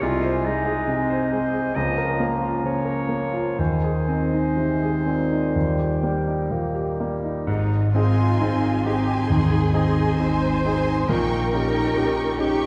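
Set in a slow 4/4 with a free, rubato pulse, this passionate, lush classical passage is cut from a longer piece. A clear, up-front concert grand piano carries the melody throughout, its smooth tone reaching down into deep bass. For the first seven seconds or so, a bright, punchy solo clarinet and a pure, mellow flute ensemble trace second lines, while a bassoon with light vibrato supplies soft accompaniment and a loose French horn section holds gentle chords in the background. At 7.5 seconds, as the winds fall away, bowed strings take over: a lush double bass section and a cello section with portamento form the bass, joined at 8.0 seconds by violin sections on melody and second line and a very quiet viola section holding a single accompanying note. The strings sing with expressive vibrato, the violins sounding focused and close, and the whole is heard from further back in a reverberant scoring stage.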